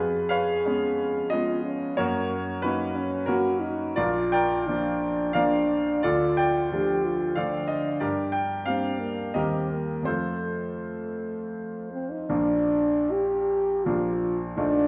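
A dark, vintage-toned French horn sings a tender solo melody over a clear, up-front concert grand piano with deep bass in this romantic classical duo, a short passage cut from a longer piece, moving in a rubato triple metre through a moderate recital hall reverb before shifting into a new section at 12.3 seconds.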